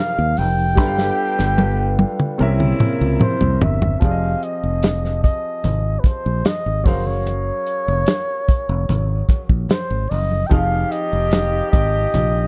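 A breathy flugelhorn with scooped notes and vibrato opens this lush, cinematic 1970s-style soul piece at 74 BPM, over an intimate grand piano, tight vintage horn stabs and mellow French horns that hold chords in the background until 4.0 s, when the music settles into F minor. Up front, a growly fingered electric bass and a dry soul drum kit with a tight kick carry the groove, with a drum fill leading into 4.0 s, while very quiet, ringing congas add colour and the horn stabs return at 10.5 s. The silky mood sits in a dark small-room sound, and the clip is cut from a longer piece.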